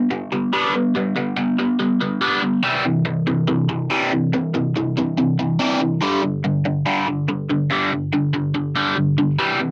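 A picked, overdriven electric guitar plays alone from start to finish, double-tracked and compressed, sitting up front with a phaser colouring its tone. This upbeat yet wistful rock fragment moves at 142 BPM in a straight 4/4 in G major, tuned slightly below standard pitch, shifting from G to C and then settling on a G5 power chord as a new section begins at 6.0 seconds. Light reverb touches the guitar within a dry, close 1970s-style studio sound, and the clip ends at 9.7 seconds as it is cut from a longer piece.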